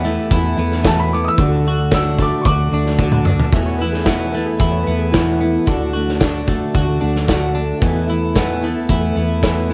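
A home cassette recording with light reverb opens this jangly, warm folk and heartland rock excerpt at 112 BPM in 4/4, where a dark, mellow vintage grand piano with audible action noise and analog delay carries the melody until 3.5 seconds over Esus4 and D chords, accompanied from the start by a bright jumbo acoustic guitar with finger squeak, a clean, compressed twelve-string electric guitar riff, a lightly overdriven tonewheel organ on slow rotary speaker in the background, a round hollow-body bass, and a loose, up-front indie drum kit with a punchy kick and rolled-off top whose fill leads into a section where a clean lap steel guitar slides a quiet second line until 6.2 seconds.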